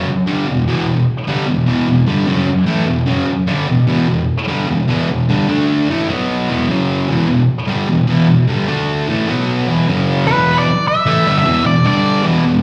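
Heard through a club's PA at a live gig, with the room's reverb and a light digital ambience around it, this raw, gritty rock cut from a longer piece drives at 150 BPM in E minor. A bright, thick, double-tracked fuzz guitar sits up front with slapback echo, grinding an E minor riff that twice runs through quick D5, A5, B5, E5 and F#5 power chords. At 10.3 seconds a dark octave-fuzz lead guitar enters, also up front, playing a short, high melody through slapback echo and analog delay until 12.2 seconds, as the riff moves from E minor to G5.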